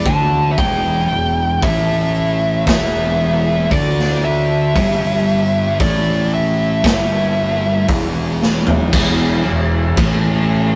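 Sludgy and hypnotic, this short cut of stoner and doom metal crawls at 58 BPM in 4/4 with a straight feel, sitting on a single E minor chord. A compressed fuzz lead guitar rides up front with a murky, distorted melody between D5 and A5 before falling silent at 7.9 seconds. Beneath it, two thick fuzz guitars grind out the riff: one shadowy and tucked in the background, the other a very quiet, mellow layer. A growly, bright fingered bass with overdriven fuzz sits prominently alongside a gritty garage drum kit, whose punchy kick, medium-tuned snare, hi-hat, toms and crash carry a rolled-off top and the pumping sound of a stone room. A drum fill at 8.4 seconds leads into a closing passage from 8.9 seconds where the harmony drops away, all captured as a rough rehearsal-room recording with warm saturation and a small-room ambience.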